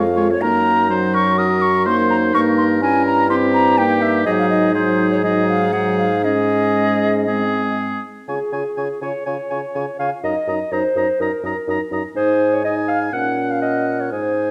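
Set in four with a freely breathing rubato, this quick classical-period movement for wind quintet moves with a graceful, spirited bearing. All five players sound from the first moment to the last at 14.5 seconds. An airy concert flute carries the melody with vibrato and tongued notes, placed at a distance. A clear oboe adds a second line with light vibrato. A mellow clarinet and a warm French horn, both with smooth tops, fill the accompaniment above a bassoon bass that sits up front with a soft attack. The harmony shifts to a new section at 8.3 seconds, the dark production is bathed in a wet recital-hall reverb, and the passage is cut from a longer piece.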